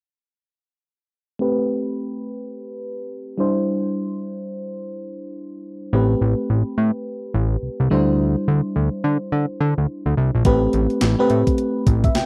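New jack swing R&B in A minor at 106 BPM with a bouncy, slick 16th-note swing, this dry, close-sounding excerpt opens at 1.4 seconds on a round, dark FM electric piano with chorus and a filter sweep alternating Am9 and D9sus4, adds a fat, saturated sawtooth analog bass at 5.9 seconds, and brings in an up-front 80s digital drum machine at 10.4 seconds with a thumpy kick, hi-hat and an overdriven gated-reverb snare.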